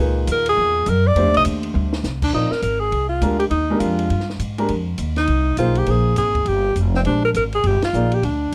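Searching and hypnotic, this brief cut from a longer modal jazz piece swings at 204 BPM in 4/4, centered on B-flat mixolydian. The alto saxophone takes the lead with a punchy, up-front solo, colored by light vibrato and scooped notes in a jazz style. Beneath it, a woody, growly pizzicato upright bass with steel strings sits forward in the mix, while a grand piano supplies smooth, vintage-toned accompaniment with short sustain. A compact cocktail drum kit, recorded naturally in a tight booth, adds dark cymbals, a high-tuned snare and a tight kick, with a drum fill at 1.7 seconds and a band accent at 7.8 seconds. Harmonies move from F#7 and a rootless F9 to a long Bb13sus4 before settling on Gm, all framed by light reverb and a dark, warm production.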